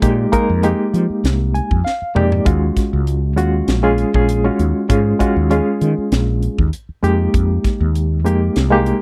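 Reedy electric piano with fast tremolo, a dark, round fretless bass and a crisp, punchy drum kit with a high-tuned snare all start together in this funky, slick excerpt of 1970s-style electric jazz fusion at 98 BPM in 4/4, moving from Fm11 to Ebm11 at 2.5 seconds and back at 7.0, with a slightly out-of-tune piano fill at 1.2 seconds and a drum fill at 1.9 seconds, all captured in a dry, close studio sound with light reverb.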